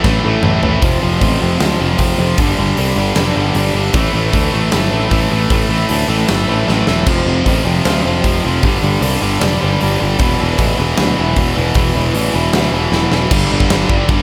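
A drum fill opens this urgent, aggressive punk rock cut in A minor at 154 BPM, then from 0.8 seconds the beat drops into a half-time feel built on power chords moving through F5, G5, A5 and E5, with more fills at 6.7 and 12.9 seconds. An up-front, overdriven electric guitar and a tight distorted guitar set further back play picked riffs over a growly picked electric bass. The big acoustic rock kit has a fat snare, punchy kick, crash, hi-hat and toms ringing in a bright stone room, and light reverb adds space.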